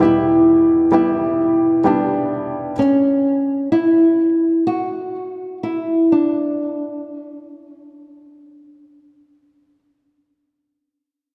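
A tender, emotional pop fragment in 4/4 with a straight feel, cut from a longer piece and unfolding at an unhurried pace that slows from 2.8 seconds onward. A fingerpicked nylon-string guitar carries the melody in a narrow middle register, its dark, small, acoustic tone sitting up front. Beneath it, a felt-muted upright piano supplies accompaniment over an E minor chord, soft and mellow with thin felt, short sustain and audible action noise that lend it an intimate closeness. The piano drops out at 2.8 seconds, leaving the guitar alone until 9.8 seconds. A moderate concert hall reverb surrounds the playing.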